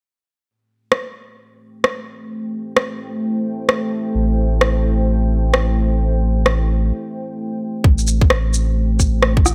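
Swung sixteenths in 4/4 give this future garage piece its loping, off-kilter shuffle, set up by an overdriven electronic rim click and shaker that enter up front at 0.9 seconds. A deep, moody ambient pad soon follows with sustained chords: detuned sawtooth unison over a sine sub octave, its slow attack and long release softened by chorus and built-in reverb, and its mellow wash pumping under sidechain compression. At 4.1 seconds a round, sine-based sub bass arrives, warm and sustained with a fast attack, sitting low and prominent in the mix. After a brief break, a tight, layered, overdriven electronic kick drum lands at 7.8 seconds and carries the fragment, cut from a longer piece, into its next section. A moderate recital-hall reverb lends the produced parts a sense of space, and the whole piece feels wistful and melancholic.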